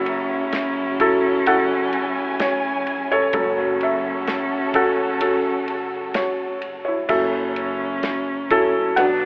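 Reflective and heartbroken, this brief fragment of an acoustic folk-pop ballad places a soft, felt-muted upright piano up front on the melody, with slapback echo and audible action noise, while a focused solo cello bows a second line, a lush studio string section holds sustained chords with vibrato and portamento until 7.1 s, a woody pizzicato upright bass sits in the background, and a natural small-room drum kit with tight kick, snare, ride and crash cymbals keeps time, all heard through light reverb and a telephone-like sound over an F#m7 chord.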